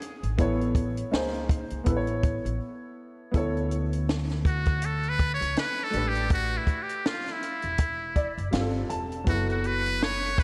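A relaxed 81 BPM groove in 4/4 swings its sixteenths gently, driven by a compact cocktail drum kit that sits up front: a dry, natural hi-hat, a punchy kick and a high-tuned snare, all roughened with vintage 12-bit sampler grit. This warm jazz-hop cut in D major is taken from a longer piece. A dark grand piano carries the chords, mellow and smooth with a short sustain and a subtle chorus, while a pizzicato upright bass adds a woody, thumpy low end. After a brief break at 2.6 seconds, a trumpet with a metal mute takes a jazz-style solo from 4.5 seconds, its brilliant, buzzy tone thin and breathy with a light vibrato and trailed by tape echo. The piano steps forward with a fill at 7.8 seconds as the harmony drifts through suspended and ninth chords. A lush hall reverb soaks the whole mix in a dreamy haze.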